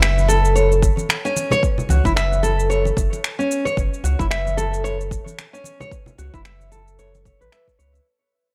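Hypnotic and meditative, this organic downtempo piece sways on a swung sixteenth feel as an up-front, fingerpicked nylon-string guitar plays classical-toned arpeggios through a low-pass filter and analog delay over a round, sustained sine sub bass, with overdriven electronic finger snaps and shaker, small-room acoustic congas entering at 0.2 seconds and a deep, layered, overdriven electronic kick arriving at 0.8 seconds, the whole recording dry and gritty with transformer saturation as it fades out from the start.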